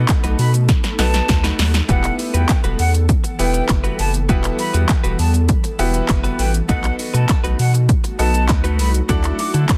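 Energetic and confident, this dance-pop excerpt at 100 BPM in E harmonic minor rides a punchy, up-front deep house drum kit with metallic hats and a drum fill from 0.7 to 1.9 seconds, a round, dark analog bass pumping under the kick, bright baby grand piano accompaniment, a mellow ethereal pad with ensemble chorus, a clean direct-recorded electric guitar riff tucked in the background, a distant group handclap, and an airy silver flute melody with vibrato and dub echo from 0.4 seconds, all over B7, Emadd9 and Dadd9 in a dense, heavily limited, dry mix.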